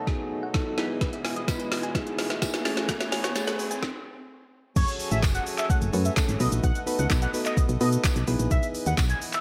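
Light reverb and a digital ambience give this confident, driving dance-pop excerpt a polished sheen, moving at 128 BPM in a straight 4/4 in F# dorian. It opens as a build-up over B7, Emaj7/B and Amaj7: a reedy, breathing pedal harmonium holds sustained chords in the background, soft electric-piano-like synth keys add round, gentle accompaniment with chorus, and a tine-like, warbling thumb-piano-like pluck spins vintage-toned arpeggios through chorus and digital delay, with all three pumping under sidechain. An electronic riser sits in the background of the build, while an up-front, produced R&B drum kit, with its soft kick, woody snare, smooth hats and tape-warm room sound, plays a fill, joined at 1.5 seconds by a distant, jingly acoustic tambourine. The pluck and riser drop out at 3.8 seconds, opening a brief stop before the drop at 4.8 seconds. There a punchy FM bass arrives up front with sidechain pumping, and a bold, retro octave-doubled lead carries the melody with a detuned sawtooth edge, ring modulation, chorus and phaser over F#madd9, B7 and Emaj7.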